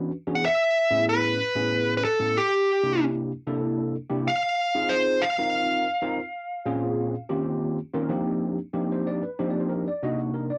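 A bright, gritty tine electric piano opens this short jazz excerpt, pushed through a combo amp with an ensemble chorus and an edge of overdrive as it lays down the accompaniment. At a slow 62 beats per minute in a straight 6/8, the mood is slick and bright, moving through rich chords such as Amaj9, C7, Fm7 and Eb13. At 0.4 seconds a dark, smooth electric lead guitar enters up front, picked and driven, with a slapback echo, carrying the melody in a fairly high register until 7.4 seconds. The piano then continues alone into a new section around 8.1 seconds, shifting to F13sus4 and Cm7b5 before the recording ends at 10.6 seconds. The sound is dry and close, like a 1970s studio session, with only light reverb.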